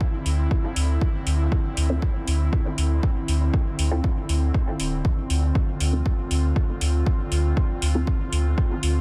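Deep and cavernous, this dub techno cut rests on a single Dm7 chord, with an airy, breathy pad holding soft, warbling chorused chords that pump, while a clean, smooth sine sub bass, also pumping, sits up front from 0.3 seconds. An overdriven, layered kick drum anchors the groove alongside dry, metallic, tape-tinged hi-hats. In the background, a muted, detuned chord stab plucks through phaser and dub echo under a filter sweep, ending at 8.2 seconds in a close, dry mix.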